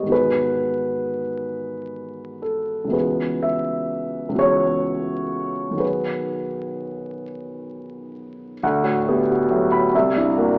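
A warm, intimate concert grand piano plays alone in this short fragment of a longer impressionist classical work. It moves in an unhurried 6/8 at 42 BPM with free, rubato timing, up front and natural, with audible action noise and deep bass reaching down to B1. Set in B major within a moderate recital-hall reverb, its dreamy, hazy harmonies drift from G#m7 through C#m7 and B6 before turning to D6 at 8.6 seconds and C7 at 9.9 seconds, all heard through vinyl crackle and a thin AM-radio tone.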